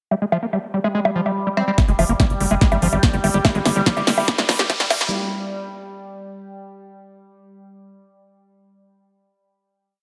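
A straight pulse drives this hypnotic psychedelic trance piece, where a squelchy, gritty acid bass riff and crisp, tape-warm dance drums with bongos and a punchy snare open, soon joined by a filter-swept, phaser-laced drone of sustained chords, before a knocking four-on-the-floor kick and a dark, rolling sequencer bass enter at 1.8 and 1.9 seconds. A brief metallic wobble bass phrase flickers just before them, and a background riser joins the build as filter sweeps and a drum fill push through the lush hall.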